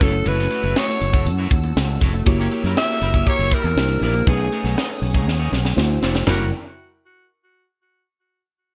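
A tight funk drum kit with a high-tuned snare, tight kick and gated reverb drives a straight, steady groove, with a fill from 5.3 to 6.3 seconds, while an up-front fretless bass holds down the low end in this polished, bittersweet and nocturnal 1980s jazz-funk pop passage. A raspy, growling alto saxophone carries the melody over a mellow tine electric piano with analog chorus, a twangy, slightly broken-up electric guitar riff and lush bowed strings sitting in the background. A clear, distant horn section joins with a soft-attack second line at 2.4 seconds, and the dry sound of this short cut from a longer piece keeps every part crisp.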